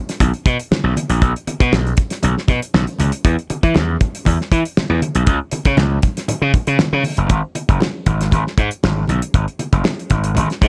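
Funk excerpt with a funky, hypnotic mood, built on a damped 70s drum kit whose dry, dark hi-hat, tight kick and fat snare sit up front beside a gritty slap bass that is bright, growly and punchy with overdrive, ranging from F#1 to E3. Low-tuned congas with a thick-skinned, vintage character and soft hands sit in the background, all three parts playing from the opening moments to the end at 10.7 seconds. Light reverb gives the track a small-room ambience, and the groove moves into a new section at 7.3 seconds.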